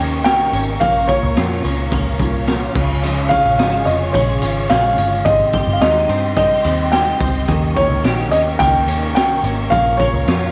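This bright, youthful excerpt of jangly indie pop features a woody upright piano carrying the melody in a straight 108 BPM 4/4 groove in Eb mixolydian, its intimate tone marked by audible action noise and a slapback echo. Beneath it, a full-bodied picked steel-string acoustic guitar and a compressed, twangy twelve-string electric guitar sit in the background, the twelve-string spinning out arpeggios through ensemble chorus and slapback echo. A distant, lush string section holds sustained chords with expressive vibrato and portamento, while a dark, round, foam-muted electric bass anchors the low end. A raw garage drum kit enters at 0.3 s, gritty and saturated, with a boomy kick, high-tuned snare, hi-hat, ride and crash heard through a rolled-off top. The harmony moves from Eb7 through Bbm, Db and Abmaj7 before returning to Eb7 and then Bbm, all set in a moderate echo chamber reverb that lends the recording a cozy, roomy glow.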